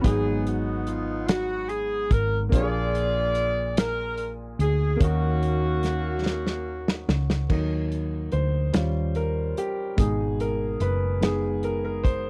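A soft-edged, loosely blended saxophone section carries the melody over round, punchy hollow-body bass, clear concert grand piano and a soul drum kit with a tight kick and dark cymbals in this solemn, soulful slow gospel passage in 6/8 at 48 BPM, set in Eb minor and cut from a longer piece. The horns drop out at 7.1 seconds as a drum fill leads into a piano solo from 7.5 seconds, its deep low end ringing over chords moving from Ebm through Eb7 to Abm. The dry, close 1970s-style studio sound places every part up front, with a faint mains hum beneath.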